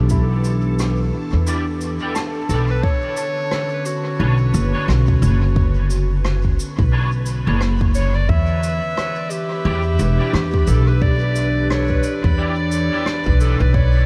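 A warbling, lo-fi tape-like pad holds Em7 and Bmadd9 chords over a woody, up-front pizzicato upright bass, a reversed, granular swelling texture and a soft felt-muted upright piano whose delayed arpeggios end by 2.9 s, opening this spacious, deep ambient dub fragment at 88 BPM with a swung feel, where a layered electronic kick and distant, brushed cabasa and rim click with dub echo settle in, a twangy, slightly broken-up electric guitar adds chorused stabs from 1.5 s, and a bright, close-miked clarinet carries a classical-style solo melody from 2.5 s, all under a light room reverb and a haze of vinyl crackle.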